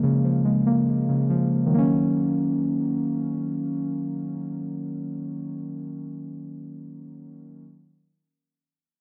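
Cold and ominous, this short hip hop fragment moves with a half-time feel, carried by a single part of muted, felt-like synth keys. The keys sit up front, dark and intimate, with a warbling vintage character and a chorus effect as they shift from Bbm7 to Ebm7 at 1.7 seconds. A small room and a dry, gritty recording give it a close, rough-edged sound.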